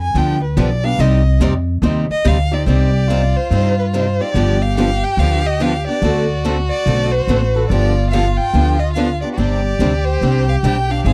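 Bittersweet and swinging, this fragment of acoustic string swing in C harmonic minor moves at 143 BPM with a dry, close sound like a 1970s studio. A warm, bowed violin carries the melody with vibrato and portamento, taking a solo for the opening 2.7 seconds before a second bowed violin adds a soft-edged line beneath it. Up front, a thumpy, woody upright bass with gut strings anchors the harmony, while two bright, boxy picked steel-string guitars, one set further back, supply accompaniment through chords such as G7, Cm and D7.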